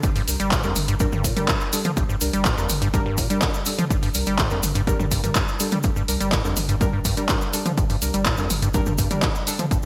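A squelchy, hollow square-wave acid bass riff with overdrive, sidechain pumping and delay opens this driving, gritty acid house excerpt over a deep, round sine sub bass, a punchy tape-warm electronic kick, an up-front analog drum machine of handclaps, hi-hat and toms in gated reverb, and a grainy cabasa in the background, while soft, dark, detuned chord stabs with chorus and delay enter at 0.3 s, all within a bright 1980s-style digital production with light reverb.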